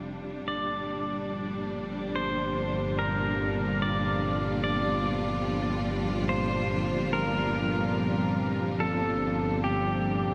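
A clear, lush string section holding sustained chords and a distant double bass section with a soft attack and tube saturation open this warm, weightless ambient fragment at 72 BPM, joined at 0.5 seconds by a bright, clean pedal steel guitar carrying the melody with slide, volume swells and delay over a Gm7 chord, and at 2.0 seconds by a very quiet, detuned, string-like drone, the whole set inside a long cathedral reverb.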